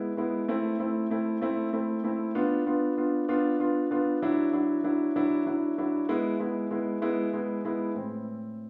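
Set in 6/8 at 64 beats per minute, this melancholic, aching pop excerpt in A minor features a solo concert grand piano, deep in the bass, polished and up front with short sustain, ranging from A2 to F4 and moving through Am, Bdim, Dadd9 and E before settling back on Am at 8.0 seconds, all wrapped in a wet large-studio reverb.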